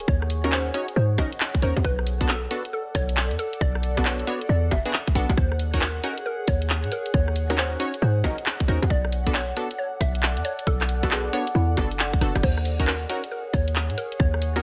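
A swung two-step garage groove drives this moody, soulful clip from a longer track, with a tight, tape-warm electronic kick and an up-front garage kit of hi-hat, handclaps, rim click, bongos and crash, rolling into a drum fill at 12.2 seconds. A punchy, sine-based 808-style bass with a fast attack sits beneath a bright, detuned sawtooth chord stab coloured by chorus, cassette tape and delay, trading between Ebm7 and Bm7. Above, a woody, round mallet-like FM pluck carries the melody through delay, while a nostalgic, lo-fi pad warbles in the background with phaser and sidechain pumping, all in a light digital ambience.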